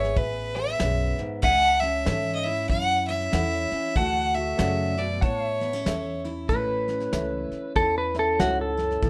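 A loping swung eighth-note feel at 95 BPM in 4/4 is set by a soft brush kit with a fat snare and tight kick, while a woody, thumpy upright bass plucks underneath, giving this short honky-tonk and classic country excerpt in A major a sunny, heartfelt mood. A clear, airy fiddle with light vibrato carries an intense, close melody up front until 6.2 seconds, over a bright, full-bodied jumbo acoustic guitar, a slightly detuned upright piano in the background, and clean pedal steel chords with volume swells and a subtle chorus. At 6.5 seconds a twangy pedal steel takes a compressed solo line, all within a small room and a rough home-demo mix.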